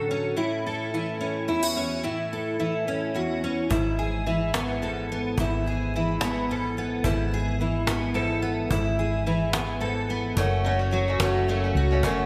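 Set in a straight 6/8 at 72 beats per minute on the dotted quarter, this hopeful, nostalgic indie folk fragment opens with a fingerpicked steel-string acoustic guitar alone, its fresh strings sounding bright and full-bodied through an analog chorus, sitting up front over an A6 chord. At 3.7 seconds the arrangement begins to build as a hollow-body short-scale electric bass enters with a dark, round, punchy tone, joined by a woody, compressed cajon played with soft hands and faint snares. The harmony moves to E/G# there, then shifts to F#m at 10.4 seconds, where a picked acoustic archtop guitar arrives, warm and boxy, also placed up front. A lush hall reverb surrounds the ensemble, and the bright sound recalls 1980s-style digital production. The tuning sits slightly sharp, with A at 441 Hz, and the passage is cut from a longer piece.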